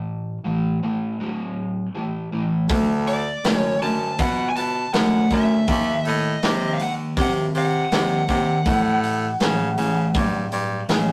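Rough and saturated like a rehearsal-room take, this swaggering, driving excerpt of blues rock power trio and southern rock sits in a small, wet room at a straight 80 BPM in 4/4, opening on a double-tracked, picked fuzz guitar riff that plays alone until 2.7 seconds, moving from A5 through D and D#m6 back to A. An edgy baritone saxophone then takes the bass role up front with vibrato and scooped, jazz-style notes, as a raw garage drum kit enters with a punchy kick, medium-tuned snare, hi-hat and a gritty, rolled-off top. From 3.1 seconds a distorted fuzz lead guitar carries the melody high above, sitting a little behind the other parts.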